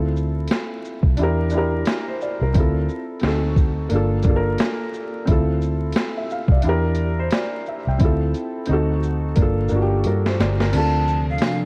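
Melancholic and reflective, this short lo-fi hip hop cut from a longer piece moves with a swung, laid-back 4/4 feel over dusky minor-ninth and half-diminished harmony. A felt-muted upright piano carries the chords from the start, its tone soft, boxy and intimate, while a vintage fingered electric bass sits up front with a dark, round, foam-muted sound. The sampler-style boom bap kit comes in at 0.2 seconds, gritty and compressed with a thumpy kick, a high-tuned snare, hi-hat, shaker and crash, and it rolls into a fill from 8.0 seconds before the kick drops out at 10.7 seconds. In the closing moments a breathy jazz flute slips in with vibrato and a soft attack, joined by a faint jingly tambourine and a deep, detuned analog pad with chorus sitting in the background. Worn, warbling cassette tape, vinyl crackle, drifting pitch and light reverb give the whole recording its hazy, aged character.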